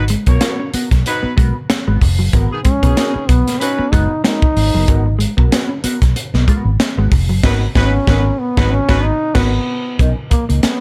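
A punchy, up-front trombone with vibrato carries the melody in this driving, cool funk excerpt, backed by a clear horn section on a second line, a round, foam-muted vintage electric bass, a hollow-body jazz guitar with wah in the background, a compressed, mellow electric guitar riff and a crisp fusion kit with a high-tuned snare and punchy kick, all over a swung sixteenth-note groove in a dry, small room where the band hits an accent at 7.4 seconds.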